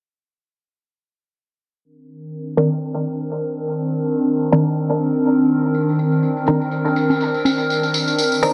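Dub techno cut from a longer piece, nocturnal and meditative, where a warbling, nostalgic pad with chorus and phaser holds a Cm9 chord from 2.3 seconds while a muted, detuned sawtooth chord stab with dub echo rides a filter sweep up front, a jingly acoustic tambourine joins at 5.7 seconds, and tape-warm electronic congas with dub echo sit in the background briefly at 7.1 seconds, all inside a wet spring reverb and a dense, heavily limited, low-pass-filtered master.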